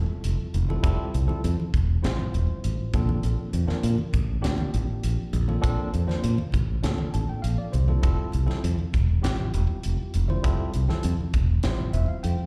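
Electric jazz fusion, soaring and slick, cut from a longer piece and heard live through a venue's PA in a recital hall: a bright, growly fingered electric bass sits up front beside a crisp, polished drum kit with a high-tuned snare and tight kick, thick-skinned, medium-tuned congas sit in the background, and a worn, slightly out-of-tune tine electric piano, lightly overdriven with plate reverb and slapback echo, accompanies over Fmaj9 and Bbmaj9 chords and adds fills at 6.8 and 11.6 seconds.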